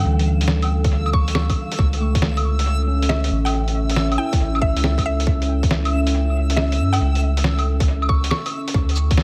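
Wistful and ghostly, this future garage excerpt moves at 138 BPM in 4/4 with a swung sixteenth feel. A moody, detuned sawtooth pad and a round, soft dub sub bass pump under sidechain over Dm and A chords, while a mellow tine electric piano with analog delay sits in the background and a woody, bright mallet-like synth pluck carries the melody through chorus and dub echo. A reversed, dreamy swelling texture, a muffled, pitched-down lo-fi sampler-style kit of cabasa, claves, hi-hat and snare, and, from 0.8 s, a tight, overdriven electronic kick up front fill out the echo-heavy mix, which carries vinyl crackle and a digital chamber reverb, with a brief break at 8.3 s before the piano and pluck stop at 8.8 s.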